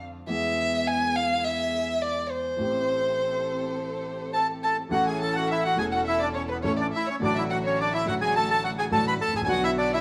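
A concert grand piano with a deep, vintage bass opens this playful, nostalgic tango at 104 BPM in a rubato 4/4, with lush symphonic string stabs sitting in the background. A close, bowed violin enters at 0.3 seconds for a solo in A minor, its soft attack, vibrato and expressive portamento up front. A reedy bandoneon takes the melody from 4.3 seconds as the music turns to A major at 4.9 seconds, the whole band heard playing live in a stone room with a wet reverb.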